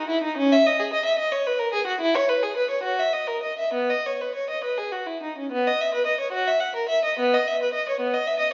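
The recording sits in a stone room whose reverb lingers for about 1.3 seconds, and its top end is closed off above 7.6 kHz, giving the sound a soft, rounded ceiling. A single violin plays alone and up front, with a dark, reedy gut-string tone in period style. The piece is a serene, dance-like baroque-style suite movement in 6/8, taken with a flexible rubato feel. The bowed line moves within a range from B3 to F#5, with a first passage running to 5.5 s before a new section takes over and carries through to 8.5 s. This brief extract is cut from a longer piece.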